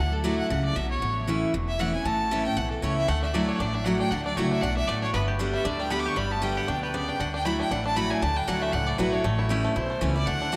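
A clear, earthy fiddle carries the melody up front, bowed with light vibrato, in this lively, virtuosic bluegrass excerpt cut from a longer piece. Beneath it, a bright, full-bodied picked steel-string acoustic guitar provides accompaniment while a woody, thumpy upright bass, plucked on gut strings, holds down the low end in a swinging 4/4 feel. At 3.1 seconds a twangy bluegrass banjo, played with fingerpicks, joins on a second melodic line with a percussive edge. The harmony cycles through Dadd9, A and G. The whole group sits in a vast, echoing space bathed in a wet cathedral reverb, and the fiddle also carries a distant quality.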